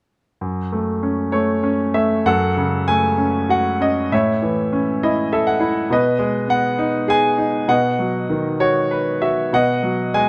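A bright, up-front grand piano carries this bittersweet, brooding classical solo in F# dorian, moving at 98 BPM in 3/4 with a free, rubato feel across a range from F#2 to G#5. The harmony drifts from F#m through A, G#m/B and B before settling on B6, and a piano fill between 4.7 and 5.9 seconds sits within the longer second passage that begins at 2.3 seconds. Close, detailed miking and light reverb give the playing a natural sound in this brief cut from a longer piece.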